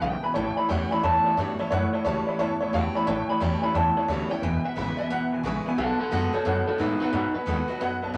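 Rockabilly at a swung 177 BPM in a rollicking, retro mood, this short excerpt features a twangy, slightly broken-up lead electric guitar solo up front over a second small-amp electric guitar riffing low with tremolo, a jangly, detuned honky-tonk upright piano that drops a fill at 5.3 seconds, a full-bodied jumbo acoustic guitar with audible finger squeak, and a woody, thumpy pizzicato upright bass, all moving through A7, E7 and B7 in a wet studio reverb.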